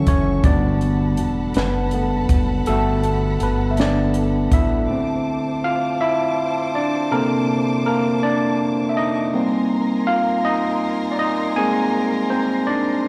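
A gritty, barky overdriven tine electric piano leads this sensual, slow six-eight R&B excerpt at 54 BPM, soloing up front through a combo amp over lush, expressive bowed strings that sustain chords with vibrato and portamento. A round fretless bass, a dark, compact cocktail kit with a high-tuned snare and tight kick, and a very quiet, clean, fingered electric guitar support the opening; the drums stop just before the bass at 4.9 seconds, and the guitar drops out at 5.5 seconds. The harmony moves from Gmaj9 to Bbmaj9 and then Abmaj9, all set in a moderate concert hall reverb.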